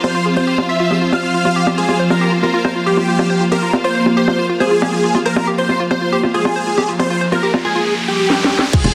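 Driving and hypnotic, this psychedelic trance passage, cut from a longer piece, moves in a straight 4/4 pulse. A huge, thick, detuned supersaw carries the melody up front, treated with phaser, delay and sidechain pumping, while an evolving, morphing wavetable pad holds sustained chords beneath it through ensemble chorus, phaser and its own reverb. A woody, wave-folded pluck repeats a riff with chorus and tape echo, and a bright, distant string section adds a bowed, vibrato-laden texture until 7.9 s. The drum kit brings a cracking snare, metallic hats, bongos and crash cymbal, all dulled by low-pass filtering, as a filter sweep moves across the arpeggiated synth and a riser climbs from 6.4 s into a drum fill. At 8.7 s an impact lands with a tight, layered electronic kick, followed by a brief hit of dark, punchy sequencer bass, all set in a lush hall reverb within a dense, heavily limited master.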